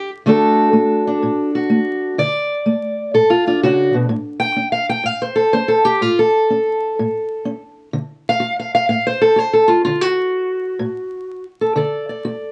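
Acoustic country blues in D major at 125 BPM with a swung 4/4 feel, this soulful, rollicking excerpt features a lone fingerpicked steel-string acoustic guitar with a dark, boxy parlour tone, sitting up front. Moving from D to A and back to D, the guitar briefly drops its chords at 10.8 seconds before landing on D at 11.8 seconds. Close, detailed microphones, light reverb and vinyl crackle give the sound an intimate, aged character.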